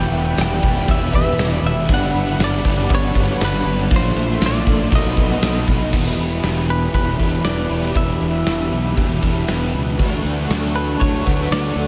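A gated 80s drum kit sits up front in this wistful, dreamy shoegaze and dream pop excerpt, entering at 0.4 seconds with a punchy kick, a medium-tuned snare and bright cymbals in an airy, polished stone-room sound. At 118 BPM in a straight 4/4, a growly, overdriven fuzz bass anchors the low end, while a thick, dark fuzz guitar with distortion and analog chorus and a raw overdriven garage guitar with reverse reverb grind out riffs in the background. Above them, a twangy, compressed clean electric guitar carries the melody through diffuse ambient delay, and a very quiet twelve-string acoustic guitar adds shimmering, octave-doubled arpeggios. A hollow, flute-like pad warbles with ensemble chorus underneath, and a jingly, band-limited tambourine plays quietly from 0.4 to 5.5 seconds. The chords drift from Em7 and Gmaj7 through Bbmaj9#11 and B7, then return to Em7 before settling on Dmaj7, all steeped in a huge, reverb-soaked haze.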